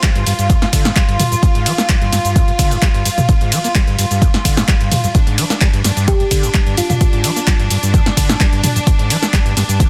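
A squelchy, gritty acid bass riff with distortion, subtle chorus and tape echo drives this raw acid house excerpt at 129 BPM, over an up-front punchy kick and an analog drum machine of snare, handclaps, hi-hat, ride, cabasa and toms, while a distant, biting string section holds pumping sustained chords on G7(no3) and a round, tine-like synth pluck adds a brief melody from 6.1 to 7.0 seconds in a dense, heavily limited mix with light reverb.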